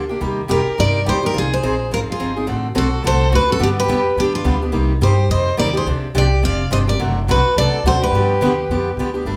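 Fiery and virtuosic, this brief cut from a longer jazz manouche piece swings at 212 BPM in C minor, with a bright, up-front picked dreadnought guitar and a woody, thumpy pizzicato upright bass on gut strings driving from the start while a fresh-stringed parlour guitar, finger squeak and all, carries the melody from 0.5 seconds alongside a focused, vibrato-rich bowed violin second line, the band captured live together in a large studio with moderate reverb.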